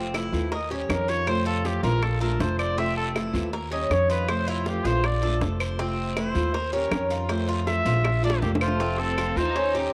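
A straight 4/4 groove at 160 BPM, set by tight, high-tuned bongos, woody claves and a raspy, saturated guiro tucked in the background, gives this relaxed Cuban son and guajira excerpt in F major its gentle pulse, with a dark, thumpy pizzicato upright bass sitting up front. A small, fingerpicked nylon-string guitar and a metallic, picked Cuban tres playing arpeggios fill out the harmony as it circles Fmaj7, Eb7 and Bbmaj7, while a punchy, vintage trumpet with vibrato carries a warm pop-style solo from 0.5 seconds. During a drum fill that begins at 8.0 seconds, a distant, focused bowed violin section adds a second line at 8.4 seconds, all colored by cassette-tape grit and moderate spring reverb in a homespun recording.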